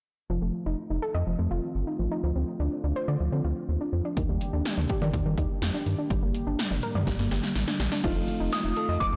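Blown-out and overdriven in a lush digital hall, this cool, melancholic synth-pop excerpt at 124 BPM opens with a rubbery square bass, a soft round pluck through tape echo and a shimmering pad drifting behind them over F7, Dm7, Ebmaj7 and Gm, before punchy 80s electronic drums with gated snare and toms arrive at 4.2 seconds, a drum fill leads into chorused analog keys at 8.0 seconds, and a glassy, warbling bell melody enters high above at 8.5 seconds.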